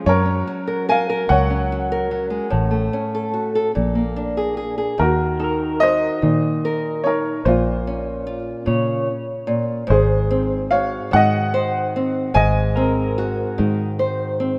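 Set in a slow, straight 6/8 at 49 beats per minute counted in dotted quarters, this tender, intimate acoustic folk-pop ballad is cut from a longer piece and runs just under fifteen seconds. A small, dark nylon-string guitar sits up front with fingerpicked accompaniment, its finger squeaks audible, while a bright upright piano carries the melody with a woody, brilliant tone and short sustain. Beneath them, a fingered electric bass gives a round, foam-muted, direct and amped low end. At 5.4 s, shortly after the harmony moves to Ebm, a lo-fi, slightly broken-up electric guitar through a small old amp enters quietly with compressed arpeggios colored by tremolo, continuing until 13.6 s. The chords move through Gb, A6, Bb7, Ebm, Bbmadd9 and Ab7, and a lush hall reverb surrounds the parts in a rough home-demo mix.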